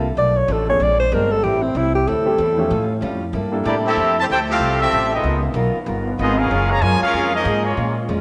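Big band swing at a brisk 189 BPM in 4/4, this brassy, joyful fragment of a longer piece rolls along with a swung eighth-note feel. A boxy, picked ladder-braced acoustic guitar and a woody pizzicato upright bass with steel strings play throughout, the bass sitting up front while the guitar stays in the background. A dark alto saxophone takes a solo from 0.2 s, its vibrato and scooped notes smoothed at the top, while a warm upright piano with long sustain comps quietly behind it. At 3.7 s a tight, present trumpet section takes over the melody with light vibrato, joined by a brilliant trombone section on a second line in the background and, from 4.0 s, a very quiet, clear trombone section holding sustained chords. The harmony moves through rich jazz chords such as Bm7b5, A7b13, Fmaj9 and Gbmaj9. A wet concert hall reverb gives the ensemble a spacious, reverberant sound.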